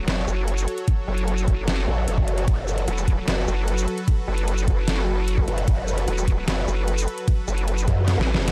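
A dark, lightly reverberant mix opens this chaotic, menacing excerpt of heavy wobble dubstep at 150 BPM in half-time F# minor, where a growling, distorted growl bass and a nasal, resonant vowel-sweep wobble bass sit up front over a lush, detuned supersaw pad pumping with sidechain, a knocking electronic kick arrives at 0.9 seconds, and a drum kit of deep snare, metallic hats, ride, and shaker closes on a fill at 8.1 seconds.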